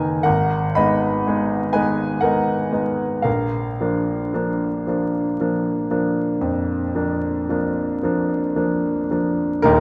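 A dark, warm production with vinyl crackle sets a clear baby grand piano inside a wet recital hall reverb, the instrument itself sounding intimate and natural, up front, with audible action noise. This is a classical romantic nocturne for solo piano, mournful and wistful, moving in a slow 12/8 at around 36 to 42 dotted-quarter beats per minute with a free, rubato feel. The piano plays alone throughout, spanning a broad range from Eb1 up to Cb6. The harmony settles on A-flat minor at 0.3 seconds before shifting to B-flat at 3.3 seconds. The passage is cut from a longer piece and stops at 9.8 seconds.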